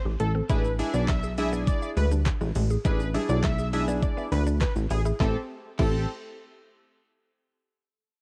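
Dry and close, with the grain of a home cassette recording, this short cut from a longer dance-pop track feels bittersweet yet confident in a straight 4/4. A thick, bold unison lead with vibrato and tape echo carries the melody over a punchy, funky analog bass and an up-front electronic R&B kit with a knocking kick, woody snare and metallic hats, while lead and bass pump with sidechain. In the background, a round, mellow mallet-like pluck spins phased, chorused arpeggios and a clean, direct-recorded electric guitar picks a compressed riff; glossy, detuned retro synth keys enter at 0.5 s over E7/A, a barely audible group handclap joins at 1.1 s, and the harmony settles on Am7 at 5.2 s.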